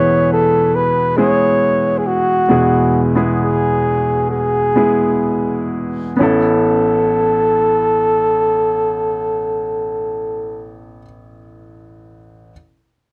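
Emotional and heartfelt, this slow pop fragment pairs an up-front, mellow flugelhorn solo, jazz-styled with vibrato, soft attacks, scooped notes and a slapback echo, over a clear, polished baby grand piano with long sustain, easing back in pace over the first 6.2 seconds before the horn falls silent at 10.8 seconds and the piano rings on in a dry, close 1970s-style studio sound with moderate reverb.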